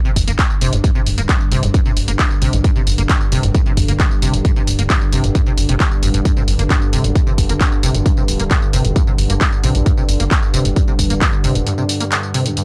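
Driving peak-time techno with a dark, driving mood, heard as a short cut from a longer piece. A heavy, layered electronic kick sits up front, joined by a punchy analog drum machine supplying handclaps, hi-hat and tambourine, re-recorded in a small room with sidechain pumping on the hats and percussion. Beneath it, a tight sequencer bass in the low register gives a plucky, saturated drive with a fast attack and evolving tone, while a squelchy, resonant acid bass riff with filter sweeps cuts through brightly, thickened by ensemble chorus and tape echo. A deep, moody pad of detuned sawtooth unison with a sine sub octave holds a sustained drone with a slow attack and long release, its chorus and built-in reverb pumping against the kick. The overall sound is dry and gritty, with hardware grain and transformer saturation, and the kick drops out at 11.3 seconds before the sequencer bass falls away at 11.6 seconds for a brief break that runs to the end at 12.6 seconds.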